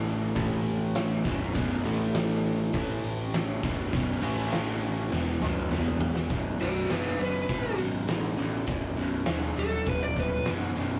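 Blues rock and southern rock in B mixolydian at 101 BPM in a straight 4/4, this driving, gritty power-trio excerpt from a longer piece pairs a crunchy, double-tracked overdriven guitar riff moving between A5, B5 and E5 with a growly, overdriven picked bass and an oversized low-tuned drum kit with a boomy kick and fat snare in a pumping stone room; after a drum fill at 5.1 seconds, a bluesy, distorted lead guitar solo enters at 6.6 seconds, all captured as a rough rehearsal-room recording with moderate reverb.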